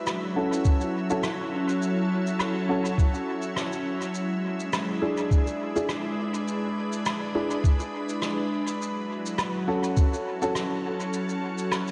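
Ambient dub at 103 BPM in 4/4, with a light swing on the sixteenths, this short excerpt cut from a longer piece feels spacious and hazy. A soft, organ-like pad holds pure, sine-toned sustained chords from F#3 to E5 throughout, its slow attack and long release thickened by ensemble chorus and its own reverb, moving from A6 to E7 at 4.1 seconds and back to A6 at 8.8 seconds. A clear, woody upright piano drops boxy stabs between C#4 and A4, softened by a low-pass filter and trailed by dub echo. Underneath sits a sampler-style electronic kick, pitched down, compressed and muffled, thumpy and tape-warm, the loudest part and placed up front. A small-room kit of shaker, rim click and woodblock, played with brushes and rolled off at the top, ticks along mid-forward through its own dub echo. The whole mix is soaked in a lush 2.7-second hall reverb and kept dreamy, with nothing above 11.0 kHz.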